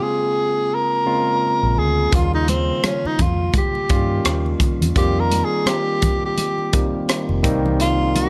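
A lightly swung sixteenth-note feel in 4/4 carries this silky, cinematic 1970s-style soul excerpt, where a breathy, whispered tenor saxophone with light vibrato sings the melody up front over a bright, barky tine electric piano played through a combo amp, joined at 1.6 seconds by a dark, round, foam-muted fingered electric bass and at 2.1 seconds by a tight funk drum kit with punchy kick, hi-hat and rim click alongside very quiet, damped congas, set in a small room reverb as the chords move from Bbm7 through Eb7 and F9sus4 to Cm7.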